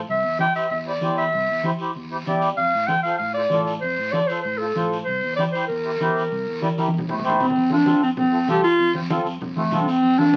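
Sunny and danceable, this short cut from a longer cumbia puts a present, classical-style clarinet up front on the melody over a reedy, mellow accordion, a punchy fingered electric bass, bright hard-handed congas and a raspy guiro, with a drum fill at 6.8 seconds leading into a new section at 7.6 seconds, all heard through a wet studio reverb and the crackle of a very old 78 rpm record.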